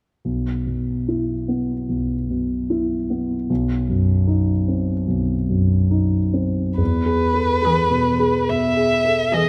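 Tender and serene, this slow, rubato romantic movement for piano quartet opens with a dark, mellow concert grand laying down deep-bass accompaniment in a moderate concert hall reverb, before an up-front violin sings a rich, expressive melody with vibrato and portamento from 6.8 seconds, joined at 7.7 seconds by a distant bowed cello line and a very quiet, warm viola accompaniment.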